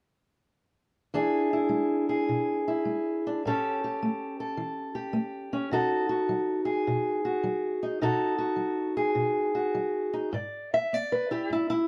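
A lone fingerpicked steel-string acoustic guitar with a dark, boxy parlour tone sits up front from 1.1 seconds, playing rollicking yet laid-back country blues with a swung 4/4 lilt. It moves through E7, A7 and B7 before returning to E7 at 10.3 seconds as a new section begins, and this short fragment of a longer piece ends at 11.9 seconds. Light reverb adds a touch of room to the dark, warm production.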